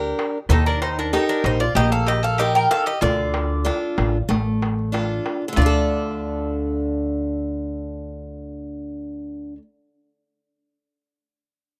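Greek folk from a bouzouki band in a bittersweet, moody D phrygian at 94 BPM, where a metallic, octave-doubled bouzouki carries the melody from 0.5 seconds over a picked mandolin second line, a brilliant, boxy steel-string guitar and a woody pizzicato upright bass up front, and a crisp metal-shell darbuka in the background that drops out at 5.9 seconds, moving from Eb to Dm in a rough small-room demo sound cut from a longer piece.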